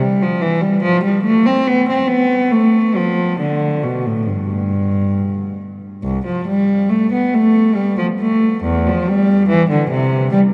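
In a 3/4 at 69 BPM, with uneven beats and free rubato, this serene, radiant baroque-style suite movement is cut from a longer piece for unaccompanied cello, tuned to A4 = 445 Hz. A single bowed cello plays throughout, from 0.0 to 10.4 seconds, ranging from C2 to C4 with a dark, reedy gut-string tone, light vibrato and period-style phrasing. The cello sits close and up front while a cathedral reverb with a 5.1-second decay carries it through a vast, echoing space.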